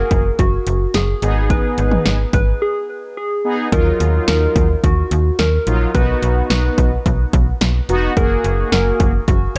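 A snappy, metallic FM bass sits up front beside a punchy analog drum machine in this bright, upbeat synth-pop excerpt, while fat, detuned sawtooth synth brass with a filter sweep carries the accompaniment and a round, warbling, keys-like synth lead plays the melody, both soaked in chorus and analog delay within an echo-heavy mix that has a break from 2.6 to 3.7 seconds.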